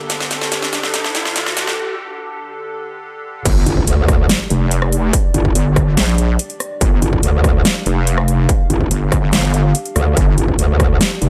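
Cut from a longer heavy, chaotic wobble dubstep track at 143 BPM with a half-time feel, it opens on an evolving, warbling wavetable pad holding sustained, pumping chords with chorus and its own reverb, alongside an electronic riser and a drum fill from the dubstep kit; after a break from 1.8 seconds, the drop lands at 3.5 seconds with an impact, a distorted, layered electronic kick, a huge snare and metallic hats, and two up-front wobble basses: one a detuned, resonant square-wave tone with overdrive and chorus, the other an aggressive FM tone, all set in a dry mix.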